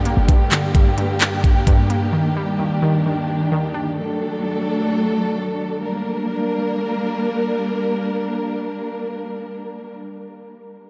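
A dark, lush bowed string ensemble with expressive vibrato carries sustained chords through this entire dark, hard-hitting half-time trap excerpt, joined by a glassy, detuned wavetable pluck with chorus until 4.0 s and an up-front electronic kit of knocking kick, crisp hi-hats and handclaps that stops at 2.0 s, all over a Gm, Ebmaj7 and D progression in a dreamy mix soaked in huge ambient reverb.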